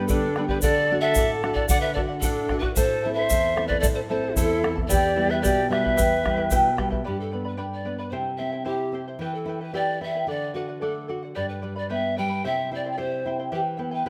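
A straight 2/4 pulse at 112 BPM drives this festive, earthy Andean folk piece in E minor, with a deep, dark bombo and a grainy egg shaker marking time until the shaker drops out at 6.6 seconds and the bombo at 7.0 seconds. A breathy, mellow bamboo pan flute carries the melody throughout with vibrato and a soft, chiffy attack, while a bright, reedy large quena plays a tongued second line beneath it until 6.7 seconds. Fingerpicked charango with shimmering double strings and a full-bodied nylon-string guitar supply the accompaniment, all heard in a moderate recital hall reverb in this section cut from a longer piece.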